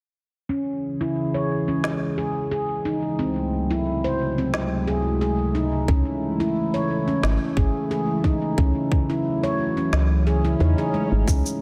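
Earthy and hypnotic, this short cut from a longer organic downtempo piece moves at 89 BPM in 4/4 with a light sixteenth-note swing, set in C# harmonic minor. A smooth sawtooth-and-triangle analog pad with a sub octave holds sustained chords from 0.5 seconds, its slow attack, long release and chorus giving a dark glow that pumps against the beat, while a close-miked stainless-steel handpan plays ringing, meditative arpeggios through a low-pass filter and tape echo. An electronic snare with a woody snap and a cabasa come in at 1.8 seconds, tape-tinged and re-recorded in a large room. At 5.9 seconds a round, soft FM bass with a fast, decaying attack arrives together with a tight, up-front electronic kick, the bass also pumping with the sidechain. The harmony rests on a C# pedal, moving from C#m through G#7b9b13/C# and Amaj7/C# to F#m7/C#, and a faint electronic swell sounds in the background near the close under a light reverb.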